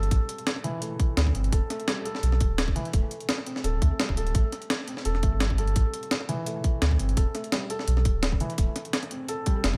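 Dreamy and melancholic, this liquid drum and bass excerpt moves at 170 BPM in 4/4 with a gentle 16th-note swing, set in A minor and tuned slightly above standard pitch. A felt-muted upright piano plays soft, intimate arpeggios from E3 to A4, its dark, short-sustained tone touched with delay and sitting low in the mix. Beneath it, a round sine sub bass holds deep, sustained notes between D1 and D2, mellow and up front. The drums pair a gritty, pitched-up breakbeat kit of compressed hi-hat and medium-tuned snare with a tight, layered electronic kick that enters at 0.1 seconds, both carrying a tape-like glow. The harmony cycles through Am7, a rootless Em7 and D7sus4, returning to Am7 at 4.3 seconds, all within a lightly reverberant space.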